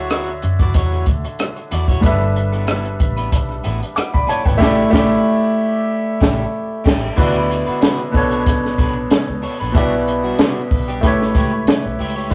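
A rough rehearsal-room recording with saturation and moderate stone-room reverb frames this bittersweet, cinematic slice of lush 1970s-style soul at 93 BPM with a light sixteenth-note swing: an intimate, up-front grand piano with audible action noise accompanies, a slightly broken-up picked electric guitar plays a riff, a dark, round, foam-muted fingered bass with tube saturation holds the low end, and a compact cocktail kit with a high-tuned snare and punchy kick keeps time, with a band accent from 4.6 to 7.2 seconds before a grainy egg shaker enters in the background at 7.2 seconds.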